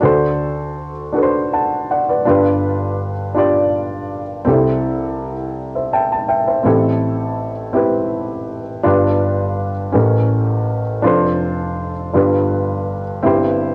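A slow, straight 6/8 pulse carries this soulful, reverent gospel excerpt for solo upright piano, its dark, woody, mellow tone sitting up front and ranging from deep bass to the upper register. Rich chords move from D7 through G7 to C6, then the piano plays a fill from 5.5 to 6.7 seconds before a second passage turns to Am7 and a tense A7b9 on its way back to G7. A moderate spring reverb, small-room ambience and the soft haze of a home cassette recording give the sound an intimate, homespun feel.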